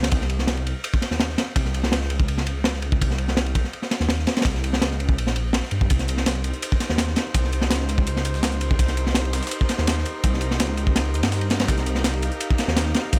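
A straight 166 BPM drum and bass groove in 4/4 is driven from the start by an up-front, crunchy breakbeat kit with a punchy kick, medium-tuned snare and dark ride cymbal, over a deep, rumbling detuned saw bass holding a Cm7 in C phrygian. At 5.9 seconds an airy, breathy chorused pad enters, joined by a gritty, overdriven sampler-style kit of hi-hat and snare sitting in the background of this raw, atmospheric jungle excerpt set in a small room.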